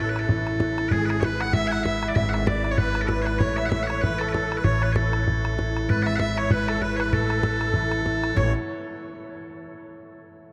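Rollicking and bright, this brief fragment of a swung Celtic reel puts piercing, up-front bagpipes on the melody, with a reedy, shimmering musette accordion tracing a second line, a ringing thumb-plucked concert harp supplying accompaniment until 8.9 seconds, a woody, growly pizzicato upright bass underneath, and a damped, tight bodhran entering at 0.2 seconds in the background, all set in a vast, echoing cathedral reverb as the harmony rocks between A and E/G#.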